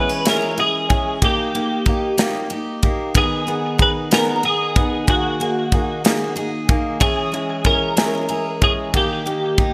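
From the first moment, a twelve-string electric guitar carries the melody, twangy and clean, sitting up front with a compressed edge, a shimmering ensemble chorus and a digital delay. Alongside it, an upright piano supplies woody, brilliant accompaniment colored by analog chorus, while a full-bodied dreadnought acoustic guitar picks arpeggios lower in the mix. At 0.3 seconds a modern studio drum kit comes in with a punchy kick, a medium-tuned snare and airy ride cymbal, all treated with gated reverb. This is a melancholic, aching pop ballad in six-eight, its harmony moving from C#m through D#, G#m and a suspended D#sus4 before returning to C#m and D#. The polished, glossy 1980s-style digital production places everything in a small room with light reverb, and the passage is cut from a longer piece.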